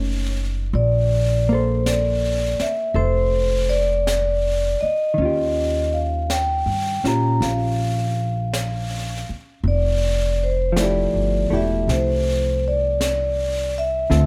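Ringing vibraphone, played with medium mallets and the motor off, carries the melody through plate reverb in this tender, romantic jazz ballad at 54 BPM, swung in 4/4 and tuned to A4 = 437 Hz. Beneath it, a woody pizzicato upright bass sits up front, while a dark, clean hollow-body electric guitar fingers soft compressed accompaniment through chords moving from Bbmaj9 to Eb9 and Fmaj9. From 0.7 seconds, an airy brush kit with a high-tuned snare and hi-hat joins quietly in a light room ambience, and the passage is cut from a longer piece.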